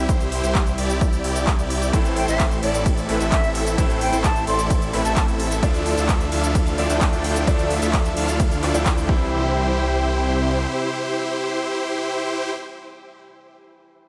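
Huge, bright supersaw chords sit up front in this uplifting, anthemic slice of festival progressive house, playing a riff with sidechain pumping and digital delay over a straight 130 BPM in 4/4 and C major. A punchy electronic kick drives the drop, joined by a crisp big-room kit of hi-hat, ride cymbal, handclaps and cabasa, both layered and re-recorded in a small room. Beneath them, a thick detuned saw bass with chorus and pumping holds the low end, while a warbling, vintage unison pad with a slow attack sustains chords in the background. A clear grand piano enters at 1.9 seconds as background accompaniment, and a reedy, airy concert flute carries a brief tongued, straight-tone melody from 2.2 to 5.2 seconds, both touched by digital delay. The harmony moves from C through Am and Dmadd9 back to C as the drums drop out around 9 seconds, and light reverb with digital ambience frames the sound of this fragment cut from a longer piece.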